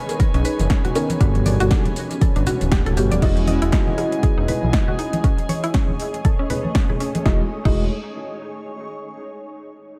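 An echo-heavy, digitally spacious mix frames this soulful, relaxed deep house excerpt in E major at 119 BPM, where an overdriven, up-front kick and a punchy drum kit with metallic hats, rim clicks, shaker and crash ride a 16th-note swing beside soft-handed congas trailing tape echo. A smooth, gliding synth bass with vibrato and portamento holds the low end, while a woody, mallet-like pluck plays chorused arpeggios with dub echo and gets a filter sweep from 3.2 seconds. Above, a felt-muted upright piano with audible action noise enters at 1.0 seconds with stabs through analog delay, set against a cloudy, evolving granular pad and a background section of sul tasto violins, all pumping with the sidechain over chords moving from Bmaj9 and Gmaj9 to Emaj9 and Amaj7.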